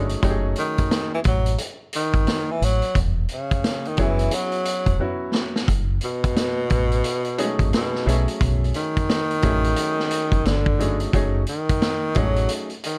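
Mellow and smoky, this jazz-hop excerpt cut from a longer piece sways at 88 BPM with a swung 16th feel in F# dorian, moving through chords such as F#m69, E69 and B13sus4. A breathy tenor saxophone with light vibrato carries the up-front melody in a low register, while a bright, woody upright piano comps alongside it, both bathed in plate reverb. A round, foam-muted dub bass and a gritty, saturated vintage drum kit with a tight kick sit close in the dark mix, with a drum fill from 5.0 to 5.7 seconds.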